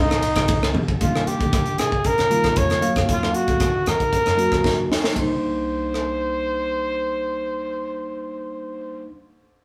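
Electric jazz fusion with a funky, nocturnal mood, cut from a longer piece and played live in a small stone room with moderate reverb. A breathy, intimate trumpet carries the solo melody up front with vibrato and a soft attack, over woody pizzicato upright bass and a crisp, acoustic drum kit with a high-tuned snare and punchy kick, which plays fills at 0.7 seconds and again before stopping at 6.1 seconds. A dark, clean hollow-body guitar and soft-handed, ringing congas sound only briefly and very quietly at the start, while a bell-like tine electric piano enters at 1.0 seconds with bright, direct chords that move from Cm9 to Ebm9 and back.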